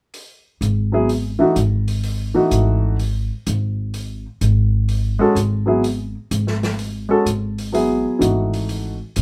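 A light reverb surrounds this short cut from a longer modal jazz piece, with the upright bass and grand piano sitting up front and the drums lower in the mix. At 126 BPM in 4/4 with a swung eighth-note feel in C# minor, the mood is searching and intense. The drum kit plays hi-hat and snare from 0.1 seconds, its small-room tone dark and smooth with a medium-tuned snare. The pizzicato upright bass enters at 0.6 seconds on a low G#, its steel-string voice woody and warm. The grand piano comes in at 0.9 seconds with an intimate, natural tone, its action noise audible, and voices a rootless C#m add11 in the middle register. It holds there until moving to F#m11 at 7.7 seconds.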